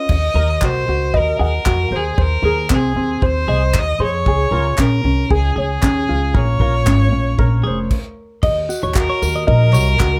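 A lightly swung 16th-note groove at 115 BPM in 4/4 drives this sunny, heartfelt acoustic pop excerpt, where a small-room country drum kit with a punchy kick, crash, tambourine and handclaps sits beneath a woody pizzicato upright bass up front, a light thumb-plucked ukulele, bright compressed twelve-string electric guitar arpeggios and a focused, distant bowed violin melody with vibrato, while crisp, very quiet group handclaps join at 4.8 s, a brief stop at 7.9 s leads into a new section at 8.4 s, and light reverb surrounds the whole.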